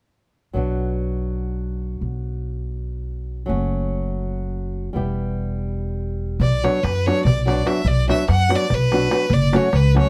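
A rich, smooth violin enters at 6.4 seconds, playing bowed with vibrato up front over a darbuka in the background, a clay-shelled, band-limited drum with a vintage tone played with soft hands. Before it, a dark fingerpicked flamenco guitar and a woody pizzicato upright bass open this fiery, virtuosic Balkan wedding-band excerpt in B minor, moving in 7/8 at 288 BPM (eighths). Close, detailed microphones and light reverb give the parts an intimate presence.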